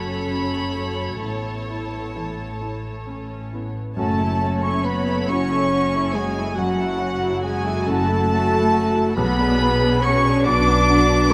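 Bowed violin, viola, cello and double bass sections open together with a warm grand piano in a slow, rubato 6/8 film-score passage at 45 BPM, the floating, sul tasto violin melody drifting over woody, up-front double basses and a moderate concert hall reverb before a dark clarinet, a mellow silver flute and a background French horn section enter at 4.0 seconds, moving from F#m through Aadd9 and F#m7 to Bm in a hopeful, uplifting mood.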